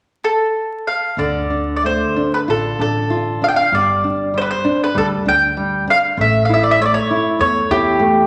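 Through a wet, large-studio reverb and a bed of vinyl crackle, this passionate, longing fado-style ballad in D minor moves at a rubato 98 BPM as a round, picked mandolin carries the melody alone from 0.2 seconds before a fingerpicked classical nylon-string guitar and a woody, growly pizzicato upright bass join at 1.2 seconds over chords of Dm, G5 and A5.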